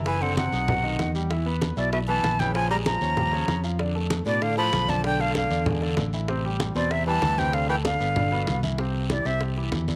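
A warm concert grand piano and a round, punchy fingered electric bass open this lively, sophisticated Afro-Cuban jazz excerpt, the piano's intimate comping carrying audible action noise and a deep low end while the dark, amped bass sits up front. A breathy metal jazz flute enters at 0.1 s with the melody, its soft attack, vibrato and lifted highs placing it at the front of the mix, while a dark baritone saxophone with a smooth top traces a second line beneath it until 8.6 s. The percussion enters at the same moment: low-tuned congas with a thick skin sit very quiet in a small room, tight, high-tuned bongos struck with hard hands stay close and dry in the background, and a raspy guiro sits close at a low level. The harmony moves through a sophisticated run of extended and altered chords before resolving to C at 8.8 s, where the flute takes a short solo as a new section begins. Light reverb and a small room ambience give the ensemble an intimate, cohesive feel.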